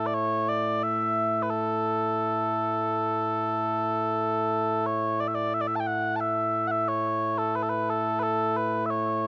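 Recorded dry and outdoors, this short cut from a longer piece of ceremonial, proud Scottish pipe music features mellow small bagpipes playing solo and up front, their sweet, continuous tone ranging from A2 to A5 with a slapback echo, moving into a second section at 5.5 seconds.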